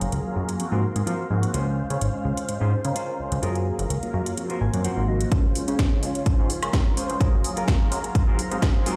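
Sunny and feel-good, this short slice of filtered disco house rides a straight groove through lush Gbmaj9, Ab13 and Dbmaj7 chords, with a punchy, funky analog bass up front and a dark, round synth brass carrying chorus and phaser alongside a vintage string machine, all pumping against the sidechain. A house kit of cracking snare, metallic hats and woodblock ticks along while a clean, picked electric guitar sits in the background and plays a fill at 4.4 seconds. At 5.3 seconds a tape-warm, punchy electronic kick drops in as a filter sweep drives a build-up, the whole mix ringing through the stony reverb of a bare room on a big sound system.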